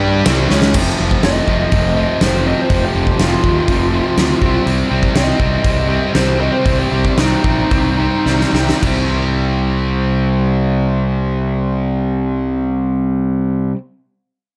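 A heavy, menacing hard rock riff in C minor opens on a cranked stack guitar, a compressed distorted electric guitar, a growly, up-front fuzz fingered electric bass and a brief, double-tracked crunchy overdriven guitar in the background, with a huge arena drum kit soon adding a fill at 0.5 seconds through its fat snare, punchy kick and bright cymbals. Over the riff at roughly 104 to 123 BPM, a dark, lo-fi lead guitar through a small cranked amp plays an overdriven solo with analog delay, as the tempo slows from 4.7 seconds. The drums drop out at 9.0 seconds while the cranked stack guitar, distorted guitar and bass carry the riff on in a light reverb.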